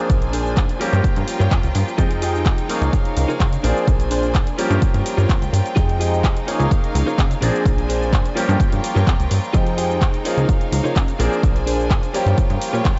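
A straight 4/4 groove at 127 BPM drives this nostalgic, sensual slice of filtered disco house, cut from a longer piece and tuned to A4 = 439 Hz. An up-front, tape-warm electronic kick and a punchy, funky sawtooth-and-square analog bass with a fast attack and decaying filter pluck anchor the pulse. An analog drum machine adds handclaps, hi-hat and shaker, its hats and percussion pumping against the sidechain. Over a looping Bb9, Gm7b5, Fm9 and Db69 progression, a brilliant, intimate grand piano with audible action noise plays phased, pumping accompaniment, a smooth bowed violin section holds even, vibrato-laden chords, and a twangy, compressed clean guitar picks a gritty 12-bit riff in the background, all in light reverb with a dulled top end and faint mains hum.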